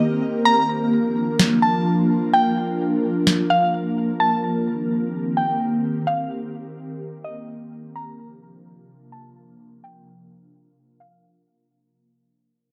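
Ethereal and spacious, this atmospheric cloud-rap excerpt moves in a half-time hip hop feel, with a filter sweep and fade-out running through its length over Bb, Cm7 and Bb/C chords. An airy, detuned pad holds sustained chords with slow attack, phaser and its own reverb beneath a woody, nasal, mallet-like synth pluck that carries the melody with chorus and delay. An up-front, tape-toned electronic snare appears only from 1.4 to 3.4 seconds, all set in a dark, moderate digital room ambience.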